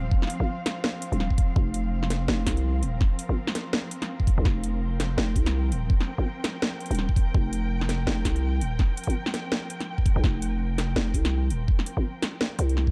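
Half-time drum and bass at 166 BPM with a swung sixteenth feel, this cinematic, tense excerpt sets a distant, woody cello section sustaining vibrato chords under sidechain pumping behind an up-front, growling, buzzy 808-style bass, a knocking electronic kick entering at 0.1 seconds, and a tape-warm kit of cracking snare and metallic hi-hats from 0.2 seconds, all in a dark, dry production.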